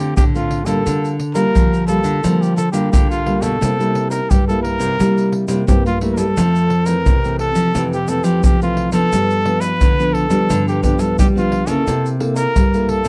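A straight 4/4 samba and choro groove at 87 BPM in F major comes from a deep surdo, tube shaker and pandeiro, played with hard hands and sitting close, dry and up front from 0.2 s. Two fingerpicked nylon-string guitars fill out the accompaniment and bass line, one full-bodied with audible finger squeak and the other in a classical style, moving through Dm7, Bb6/D, C7, Fmaj7, G7 and C6. Over them, a close-miked, jazz-style solo trumpet with light vibrato carries the melody in this sunny, joyful passage from a longer piece, recorded in a dry 1970s-style studio with light reverb.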